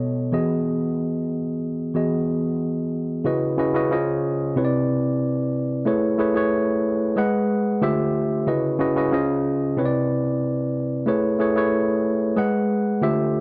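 A worn, slightly out-of-tune tine electric piano plays alone from the first moment, lightly overdriven through a combo amp and sitting up front, opening this smooth soul fragment on a lush Emaj9. At 3.3 s the harmony starts moving through a richer cycle of C#m11, C#maj7, Cmaj7, Amaj7, G#m7 and a passing Dm11, which then repeats. A moderate echo chamber reverb and a dark, warm production give the piece a hazy, late-night glow.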